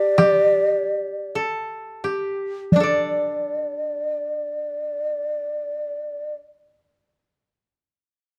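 A rubato pulse in 2/4, drifting between 39 and 56 BPM and slowing over the first 2.7 seconds, carries this calm, austere fragment of Japanese traditional chamber music, where an up-front bamboo shakuhachi sings a breathy, hollow melody around D5 with vibrato, tongued attacks and chiff, a fingerpicked koto adds a mellow, woody second line between D4 and D5, and a close taiko ensemble struck with heavy sticks sounds from 0.2 to 3.4 seconds, all captured by close, detailed microphones in light reverb.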